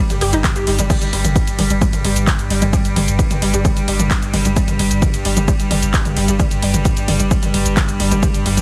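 Driving, relentless peak-time techno at 131 BPM, where a punchy, up-front electronic kick and an analog drum machine, whose crash, ride, hi-hat, shaker, handclaps and toms pump with the sidechain, drive over a round, tube-saturated sine sub bass on G1, while a resonant sawtooth drone with moving overtones and a warbling, lo-fi detuned pluck riff, chorused and tape-echoed, breathe with sidechain pumping inside a heavily compressed, radio-like mix with light reverb.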